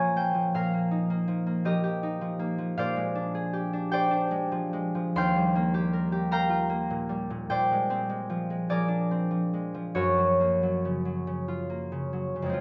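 A fingerpicked concert harp, ringing and up front, carries this gentle, mysterious 12.6-second classical solo fragment in a rubato 6/8 lilt, tuned slightly low to A4 = 438 Hz and spanning Eb2 to C6 through lush chords such as Bbm7, Bb13, Eb69 and Gbmaj7, with a moderate recital-hall reverb and a softened, rolled-off top end.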